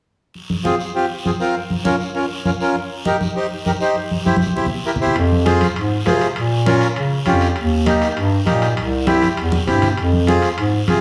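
Fiery and danceable, this cumbia clip in F minor moves at a brisk 199 BPM in a straight 4/4, cycling through Fm, Bbm, Eb and C. A raspy, compressed guiro opens at 0.3 seconds, joined almost at once by low-tuned congas with a thick-skinned, soft-handed sound and a reedy, close-miked accordion that sits up front, dry and full, carrying the accompaniment. At 5.2 seconds the groove fills out as a mellow bass clarinet takes the bass line with a soft attack and smooth top, played in a classical style and placed prominently, while ringing metal-shell timbales with a vintage, band-limited tone sit in the background. Drum fills mark the turn into this second passage and return briefly near 9.5 seconds. A large studio reverb gives the mix a roomy, distant perspective, and the clip ends mid-flow, cut from a longer piece.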